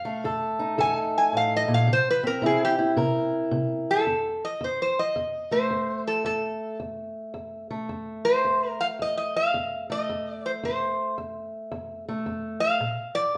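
This is a rollicking, swaggering acoustic country blues for a guitar duo, taken from a longer piece and set at 110 BPM in 4/4 with a swung eighth-note feel in F mixolydian. The metal-body resonator slide guitar carries the melody up front, played with fingerpicks and a steel bar, and its tone is metallic and nasal. During the opening 4.1 seconds it takes a slide solo over F7 and C7 changes. Beneath it, the fingerpicked steel-string acoustic guitar supplies the accompaniment throughout, and its parlour-sized sound is dark and boxy, with audible finger squeak. After the solo the harmony settles on F for a long stretch before moving to Bb at 12.8 seconds. The two players sound as if they are performing live in one room, wrapped in a large, wet studio reverb.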